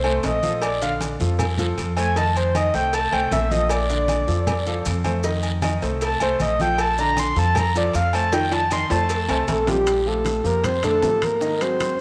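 A lively, danceable Afro-Cuban jazz excerpt, led by a breathy, flute-like synth with chorus and vibrato that plays a soft solo up front until 9.9 s, over a clear, intimate grand piano with audible action noise and a woody, thumpy pizzicato upright bass. Beneath them sit ringing agogo bells and timbales, damped low-tuned congas, very quiet cowbell and bongos, a raspy guiro and grainy maracas, with a drum fill from 8.3 s. A mellow, breathy trombone enters in the background at 9.5 s, all set in a moderate echo-chamber reverb.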